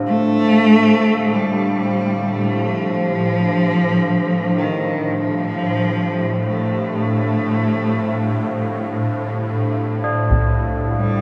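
Dark and cavernous, this dark ambient drone piece is cut from a longer work and hangs in a vast, echoing space drenched in cathedral reverb. A deep, moody pad holds sustained chords throughout, its detuned sawtooth and sine layers wave-folded and ring-modulated under chorus, while a swarming, tense drone evolves beneath it with a granular, slowly blooming texture. Up front, one expressive cello enters at 0.1 seconds with a bowed melody full of vibrato and portamento, sounding distant yet close to the ear and carrying echoes from its delay. Soft, metallic tubular bells ring out mellow arpeggios in the background, also trailing delay. Near the close, at 10.3 seconds, a taiko ensemble played with hard sticks adds a brief, filtered passage in a small room.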